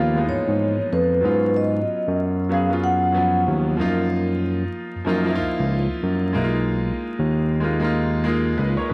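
A lazily swung sixteenth-note groove sets up this sultry, smooth neo-soul R&B fragment, where a ringing, metallic vibraphone with soft mallets and fast motor vibrato carries the melody through a slapback echo until 3.4 s, a vintage concert grand with deep bass and long sustain plays accompanying chords up front, and a bright, barky, lightly overdriven tine electric piano holds down the bass line, all over a C#13, G#m7, F#6 and Bmaj9#11 progression in a moderate echo-chamber reverb with a bed of vinyl crackle.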